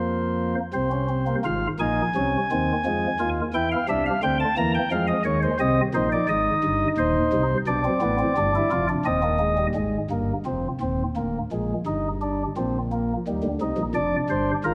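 A chamber organ sounds first, playing solo on soft flute stops whose pipes carry an audible chiff at the start of each note. This is an excerpt of a baroque-style three-part fugue in F minor, moving at 87 BPM in a straight 3/4, and its mood is lively and joyful. The organ's warm chamber voicing sits up front, spanning from a deep D1 to Bb5, while a lush scoring-stage reverb with a 1.8-second decay surrounds it. The harmony moves from an F at 0.0 seconds through F minor, diminished chords and C minor before returning to F minor at 9.8 seconds. From there it passes through Bb7, G minor and Eb, and the passage breaks off on a Bb7 over F at 13.9 seconds.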